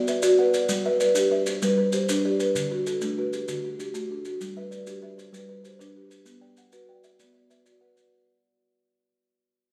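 A straight 12/8 pulse at 129 BPM drives this hypnotic southern African traditional piece, a short cut from a longer work built on an mbira-style interlocking cycle in G major that moves through Bm, G and D. Up front, a buzzing marimba played with soft mallets spins woody, round arpeggios from D3 to G5, while a kalimba rings beneath it in the same range with hollow, fingertip-plucked tones and grainy maracas add a mellow, vintage texture from 0.1 to 8.1 seconds. A recital-hall reverb gives the whole a churchlike sense of space, and the passage fades out across its full length.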